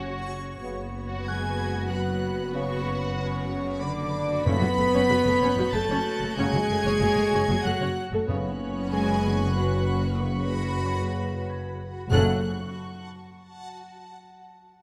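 A cinematic suspense film score cue in 3/4, uneasy and tense, cut from a longer piece. Bowed violin sections play sul tasto with a soft attack: one carries a pure, floating melody high above a second line, while another violin layer adds a faint texture at the very top in the background. Lush violas with vibrato fill the middle, woody double basses sit up front holding a single low note, and rich cellos share the bass role from a distant position. Dark French horns and a tight trombone section with light vibrato hold sustained chords, joined by a reversed, granular swelling texture that glows bright with its own built-in reverb, while a very quiet concert harp rings with fingerpicked notes. Timpani with medium mallets on calf heads strike at 4.5, 8.3 and 12.1 seconds, and a moderate concert hall reverb gives the ensemble a spacious depth.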